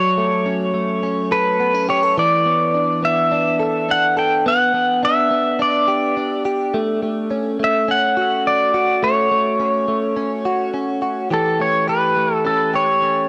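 Floating and blissful, this dream pop fragment drifts at 105 BPM in D major, where a bright, scooped clean electric guitar, recorded direct with analog chorus and tape echo, picks arpeggios beneath a twangy pedal steel guitar that carries the melody with fingerpicked slides, volume swells and its own tape echo. Both instruments sit up front and play throughout, moving through rootless Dmaj7, E7sus4 and Em7 before the harmony shifts to A7 at 11.3 seconds. A light reverb and the soft grit of cassette tape and transformer saturation lend the mix a hazy, nostalgic glow.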